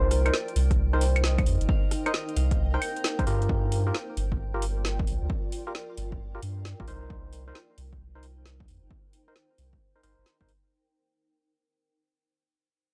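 A round, deep dub sub bass sits up front in this bouncy, soulful two-step UK garage excerpt at 133 BPM with a swung 16th feel, moving over Cm7 and Gm7 while a punchy, tape-warm analog kick joins at 0.7 seconds alongside a layered kit of woody snare, metallic hats, claves and rim clicks. Hollow, dark organ stabs with chorus punctuate the groove. A ringing, fingerpicked concert harp melody plays until 4.3 seconds, all of it floating on a cloudy, blurred granular pad with built-in reverb and sidechain pumping, in a dry, gritty recording with transformer saturation that fades out throughout.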